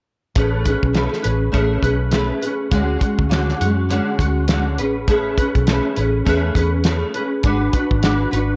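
Nostalgic and sunny, this short cut from a longer indie pop and bedroom pop piece moves at an easy pace with a lightly swung sixteenth-note feel. A bright, small-sounding nylon-string guitar sits up front, fingerpicked with audible finger squeak and given a shimmering ensemble chorus and vibrato as it carries the accompaniment through rich chords like Amaj9 and Dmaj7#11 before settling on G#m7b5. Underneath, a vintage muted fingered electric bass adds a dark, round, foam-muted low end through an amp. The cloth-damped drum kit is thuddy and up front, with a fat snare, tight kick and hi-hat, its top rolled off for a soft, close feel in a small room. Moderate spring reverb and small room ambience surround the parts, while a worn cassette tape character brings warbling pitch drift that deepens the faded, homemade charm.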